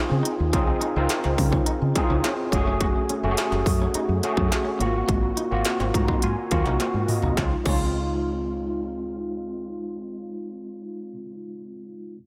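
A straight 4/4 pulse at 105 BPM drives this polished 1980s jazz-funk pop excerpt in Db major, upbeat and urban in mood, cut from a longer piece. Up front, an industrial drum kit plays from 0.3 to 7.8 seconds, electronic and overdriven, with a distorted kick, clanging snare, crisp hi-hat, crash cymbal and toms, closing the opening section with a fill at 6.8 seconds. A barky, gritty tine electric piano, overdriven through a combo amp and thickened with ensemble chorus, carries the accompaniment across the whole clip, adding fills around 2.0 and 5.7 seconds. The fingered electric bass sits direct and amped with a foam-muted tone, while a clean, twangy, scooped electric guitar riff drifts in the background under lush chorus until 7.8 seconds. The harmony moves through Dbmaj9, Gbmadd9 and Ab13 before returning to Dbmaj9 as a brief second section begins at 7.4 seconds, all set in light reverb.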